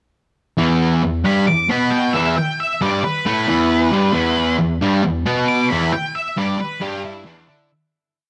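A bright, double-tracked fuzz guitar drives a compressed, up-front octave riff from 0.6 seconds in this rowdy, swaggering rock piece at 135 BPM, joined at 1.3 seconds by a dark octave-fuzz lead guitar whose lick-based theme keeps returning, all in light digital ambience before a fade-out from 5.9 seconds.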